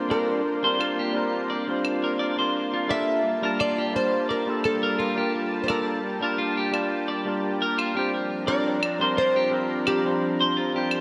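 Relaxed and warm, this sunset chillout excerpt moves at 86 BPM in G minor with a gentle sixteenth-note swing, drifting between C9sus4 and Gm9 chords. A small fingerpicked nylon-string guitar carries the melody through analog chorus, shimmer reverb and delay, over a barky, up-front tine electric piano and a thick, detuned sawtooth pad with slow attack, warbling chorus and vintage 12-bit sampler grit. A clean picked electric guitar plays low-pass filtered arpeggios, and distant, roomy claves join at 0.8 seconds, all set in a lush hall reverb with bright 1980s-style digital production.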